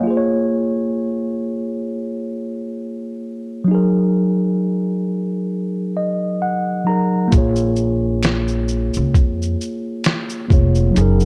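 Lo-fi hip hop with a cosy, nostalgic mood and a gentle swing, built on a mellow tine electric piano that plays alone through a low-pass filter, moving from A#m7 to F#69 and back. At 7.3 seconds a woody pizzicato upright bass and a muffled, pitched-down sampler-style kit join up front, with a thumpy kick, medium-tuned snare, hi-hat and shaker. A barely audible finger snap from a small room appears briefly, all within a dark production with light reverb.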